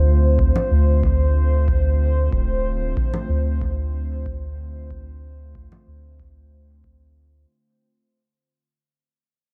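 A warbling, lo-fi tape-like pad with chorus and 12-bit sampler grit sustains a dark Dm7 chord over a round, up-front dub sub bass in this spacious, meditative ambient dub fragment in D minor at 93 BPM, as a deep electronic kick enters at 0.4 s and dub-echoed congas at 0.6 s, both in a small room, while the clip fades out across its 7.5 seconds.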